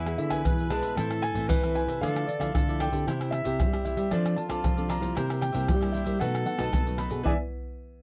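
A dry, close 1970s-style studio sound frames this festive, sunny samba-and-choro excerpt at 115 BPM: a dark, mellow baby grand piano carries the melody with long sustain, a breathy tenor saxophone with light vibrato, scooped notes and a smooth top adds a jazzy second line, a crisp picked cavaquinho sits in the background, a thumb-plucked classical nylon-string guitar with finger squeak comps, a second nylon-string guitar plays the bass from the background, and up-front maracas, pandeiro, tamborim and deep surdo, played with soft hands, carry the groove to a band accent at 7.3 seconds.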